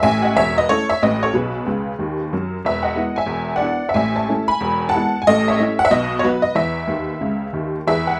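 A jangly, detuned honky-tonk upright piano plays alone and up front through this brief, playful stride jazz passage, spanning from deep bass notes to bright upper keys. The tune swings at 183 BPM in E major, moving through chords centred on A, B and E, with piano fills popping up at 1.7 and 6.9 seconds. A moderate studio ambience lends the vintage tone a natural sense of space in this short cut from a longer piece.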